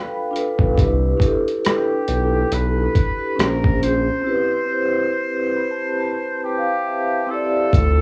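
Hazy and nostalgic, this lo-fi hip hop excerpt drifts at 69 BPM in 4/4 with a lazy sixteenth-note swing, moving through G9, Cmaj7, Bbm7 and Cmaj13 chords. A soft-mallet vibraphone rings up front with a metallic shimmer and slow motor vibrato, playing fills at the start and again from 5.1 seconds, while a distant, roomy trumpet in a straight mute sings the jazz-style melody with a nasal, breathy tone, light vibrato and scooped notes. A gritty, compressed sampler-style kit with a thumpy kick, hi-hat and rim click arrives at 0.4 seconds, joined just after by a smooth, sustained sawtooth-and-triangle synth bass; cassette tape colours the drums, vibraphone and trumpet, a plate reverb and low-pass filter soften the vibraphone and trumpet, and a break begins at 4.3 seconds.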